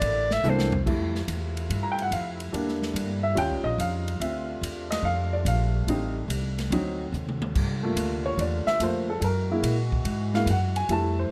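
Close, detailed microphones and light reverb frame this joyful, swinging big band jazz excerpt. A clear clarinet with light vibrato and scooped notes opens with a brief line before a woody upright piano takes the solo from 0.9 seconds, over pizzicato upright bass, distant, roomy trombone section chords, and a punchy, airy drum kit that plays fills at 0.4 and 7.1 seconds as the harmony moves from Fmaj7 to Gb9.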